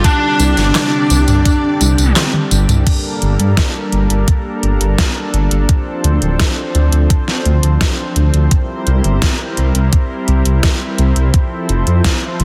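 A distorted, picked electric guitar lead opens this nocturnal, cinematic synthwave excerpt, shadowed by a shimmering vintage string-machine violin line in the background. Both drop out at 2.1 s, while a lush, thick, chorused pad holds sustained, pumping chords alongside a thumpy, tape-toned electronic kick and a layered, overdriven pop kit with a deep snare, hi-hat, claps, tambourine, toms and crash. A dark, rumbling detuned saw bass sits up front from 0.4 s, and a drum fill at 2.2 s leads into a Gm(add9), Dm7, C7 and Fmaj7 progression, all under a dense, heavily limited master.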